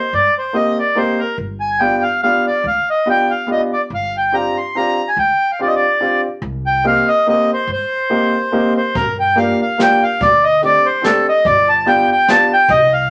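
A wet studio reverb surrounds this short, nostalgic musette waltz, a fragment cut from a longer piece, with a whirling, gently swung three-beat lilt. A reedy, mid-forward accordion carries the melody up front from the very start. An intimate upright piano sits close beside it, woody and polished, its action noise audible as it fills out the accompaniment. Underneath, a thumpy pizzicato upright bass with steel strings anchors the harmony, sitting low in the mix. At 8.9 s the music moves into a new section, and a jazz brush drum kit joins at 9.0 s with a medium-tuned snare, a punchy kick and hi-hat, its brushes heard in a studio room.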